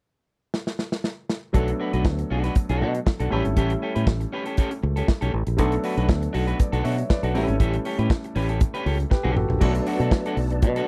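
A dry, close 1970s-style studio sound frames this sultry, driving disco excerpt in B minor at 119 BPM, where a modern studio drum kit with bright cymbals and a punchy kick opens with a fill at 0.5 seconds before a growly fingered electric bass, a slightly broken-up, scooped electric guitar and a natural-sounding concert grand piano enter at 1.5 seconds over alternating Bm7 and A7 chords, and a soft, flute-like tonewheel organ with key click, chorus vibrato and fast rotary speaker arrives in the background at 9.6 seconds.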